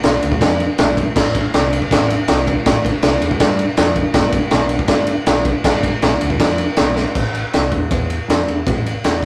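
A gritty, raw garage rock excerpt in A minor at 160 BPM opens with a crunchy breakbeat drum kit, up front with a high-tuned snare, tight kick, crash and ride over a dark, saturated, rolled-off top, together with a growling picked electric bass with overdrive from the very start, all in a rough rehearsal-room recording with light reverb and tube saturation, and a drum fill at 7.0 seconds leads into a new section at 7.2 seconds.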